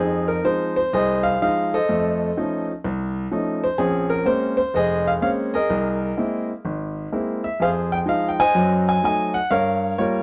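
Swung eighths at 126 BPM in 4/4 carry this smoky, cool solo jazz piece in F minor, tuned to A4 = 435 Hz and cut from a longer performance, where a clear, natural grand piano sits up front across a range of F1 to Ab5, moving through Fm7, Bbm9 and C7alt toward F#dim7 and Gm7b5, all captured in a dry, close 1970s-style studio sound with a touch of small room reverb.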